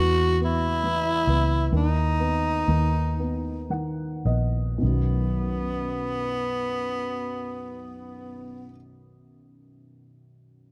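A romantic, heartfelt pop excerpt in a slow 6/8, cut from a longer piece, opens with a tempo that slows over its first 4.8 seconds. A growling tenor saxophone carries the melody up front, its raspy, gritty tone touched with light vibrato and a slapback echo. Beneath it, a dark upright piano supplies mellow, woody, slightly detuned accompaniment and steps forward with a fill from 3.2 to 4.8 seconds. A vintage fingered electric bass, foam-muted and amped, lays down a round low line. The saxophone and bass stop at 8.7 seconds, leaving the piano to ring on alone until 10.7 seconds, all set in light reverb and a small room ambience.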